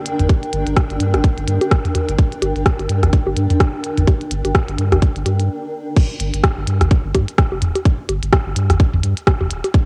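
A blurred, granular cloud pad opens this sparse, clinical minimal techno excerpt, its detuned unison tones evolving behind a slow attack, a moving notch and its own reverb, pumping against the kick and colored by cassette tape. Almost at once a small-room click kit of clicky hats, rim clicks and crash cymbal enters, soon joined by a tight, layered electronic kick that sits up front with a tape-softened body and the air of a large room. A deep, thick sub bass with a fast attack and tube saturation sits prominently, pumping in step with the kick. Dry, analog-flavored electronic toms and bongos move with the track's swung sixteenth-note feel. The pad drops away at 5.5 seconds, and from 6.0 seconds the drop continues on kick, clicks, bass and percussion, with the harmony moving from a minor chord to a bare power chord, all with a light reverb and a homemade cassette character.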